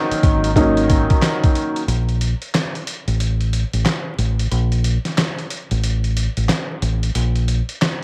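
A dusty home cassette recording with vinyl crackle and light reverb frames this reflective yet tough boom-bap hip-hop fragment at 91 BPM, swung on the 16ths and cut from a longer piece. A worn, woody, slightly detuned upright piano with cassette tape colour plays over an Ebm7 chord until 1.8 seconds, while a dark, round, punchy fingered electric bass and a gritty, compressed sampler-style kit of thumpy kick, fat snare, hi-hat and handclaps enter at 0.1 seconds. The piano drops out at 1.8 seconds, and from 1.9 seconds a break follows where bass and drums carry the groove up front, the kit carrying the air of a large room.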